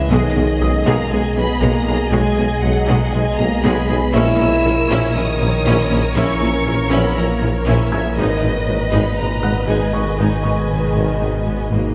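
In a straight 4/4 pulse, this brooding, vast fragment of a hybrid orchestral and electronic film score moves from G#m/B through A#dim at 4.1 seconds and back to G#m. Two lush violin sections, one focused and the other soft-edged and expressive, carry the melody and a second line, and a smooth viola section supplies accompaniment beneath them, while close cello and double bass sections, a clear tuba and a deep sine sub bass with octave anchor the low end. Distant, mellow French horn chords and a moody, detuned sawtooth pad with chorus fill the background, and a felt-muted upright piano, intimate with audible action noise, adds delayed texture up high, all set in a lingering concert hall reverb.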